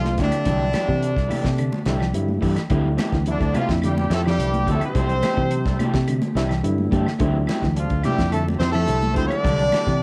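Afrobeat groove in D minor at 107 BPM, driving and funky, cut from a longer piece, with a punchy, up-front horn section carrying the melody through cassette tape echo over a round, dark fingered bass, a damped 70s drum kit with fat snare and tight kick, soft-handed distant congas and woody claves in the background, two slightly broken-up electric guitars playing arpeggios and stabs, a reedy electric piano with fast tremolo adding a fill at 6.4 seconds, and very quiet alto saxophone and trombone section lines, all set in moderate spring reverb on a home cassette recording as the chords move between C69 and Dm11.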